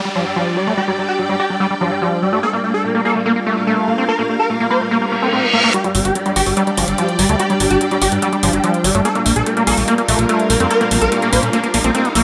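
A moderate digital room gives this intense, psychedelic trance excerpt in G minor at 145 BPM a sense of space, as a bright, morphing wavetable pad with chorus, lush bowed strings and background downlifter, reverse cymbal and riser effects open beneath a squelchy, gritty acid bass riff with dub echo and filter sweeps. A swarming, aggressive rave lead carries the melody up front, its detuned unison voices thickened by chorus, phaser and dub echo. After a reverse cymbal at 5.1 seconds, the build-up brings in metallic electronic hi-hats, a fat, thick analog bass and, until 8.0 seconds, a very quiet wobbling formant-sweep bass line.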